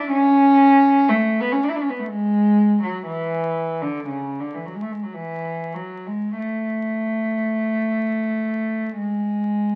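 Heard through the crackle of a very old 78 rpm record with light reverb, this brief classical fragment of a longer piece offers a single bowed cello, unaccompanied and up front, in A major. Played sul tasto with a soft attack, its pure, floating tone moves between C#3 and E4 in a free, rubato 3/4 at roughly 37-63 BPM. The mood is serene and nostalgic across the whole 9.8 seconds.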